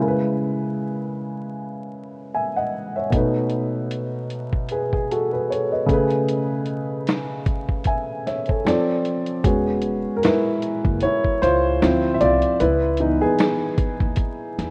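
Vinyl crackle and a muffled top end give this rough home-demo clip of nostalgic, cosy lo-fi hip hop a light reverb and a homemade feel, at 76 BPM in E major with a lazy sixteenth-note swing. A mellow upright piano with cassette-tape colour and audible action noise opens alone on C#m7 before gritty, pitched-down sampler drums with a thumpy kick join at 3.1 seconds. At 9.4 seconds the piano steps forward into a solo over E6 as a woody, growly pizzicato upright bass enters beneath it.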